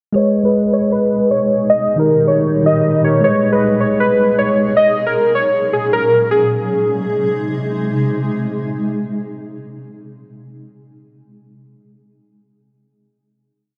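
Brooding and menacing, this short hip hop piece leans into trap with a half-time feel, a dark, warm production and a lush hall reverb. A mellow tine electric piano plays clean, direct rhythmic chords in a spread voicing, repeated like a sampled loop and held up front until 4.8 seconds. Over it, warbly lo-fi synth keys carry a nostalgic looping melody, their detuned, chorused tone shaped by a fast attack, decaying notes and a filter sweep across the breakdown. Beneath both, a granular cloud pad enters at 0.9 seconds with slow-blooming sustained chords that sound blurred and evolving, its own reverb thickening the haze. The harmony moves from G#m to D#, back to G#m and on to F#add9, before settling on a G# final chord from 6.3 seconds as the pad rings out.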